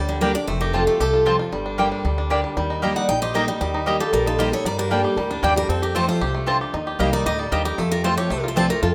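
A bright, full-bodied steel-string acoustic guitar sits up front, carrying the melody through this lonesome yet driving bluegrass passage, cut from a longer piece, at a brisk 230 BPM in a straight 4/4. A second picked acoustic guitar with fresh strings plays accompaniment beneath it, while a twangy, percussive banjo plays arpeggios and a thumpy, woody upright bass anchors the low end. A double-strung mandolin punctuates the groove with stabs from 0.2 seconds, and at 3.0 seconds a metallic, nasal lap resonator guitar played with a slide enters with a second line, sitting in the background. The harmony moves through F, G minor and E-flat. Moderate plate reverb gives the rough home-demo mix a lingering sense of space.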